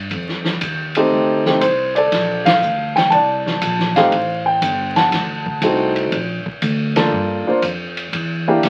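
This jazz piano trio excerpt swings along at 120 BPM in 4/4, its smoky, cool mood colored by the crackle of a very old 78 rpm record. The upright bass opens the passage, plucked and growly with a woody tone, and the vintage drum kit joins at 0.1 seconds with hi-hat, ride cymbal, a tight kick and a medium-tuned snare, sitting up front with a rolled-off top. The grand piano carries the melody from 1.0 seconds, natural and close, ranging from A3 to A5 and standing clearly above the bass and drums. The whole band hits an accent at 2.4 seconds, and the harmony moves through rich colors such as Bbmaj9, G9sus4 and D7b9 before settling on Em7b5. A moderate studio reverb gives the trio a modest sense of room, cut from a longer piece.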